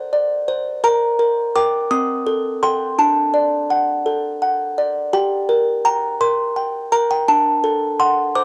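A delicate, tinkling music box plays alone, up front and bright, in an eerie, wistful classical lullaby in G minor, moving at a slow 56 BPM in a straight 6/8 through chords such as D7, Gm and Am7b5 across its 8.4-second span, its plucked, small-box sound colored by cassette tape and set in the light reverb of a small room on a home recording cut from a longer piece.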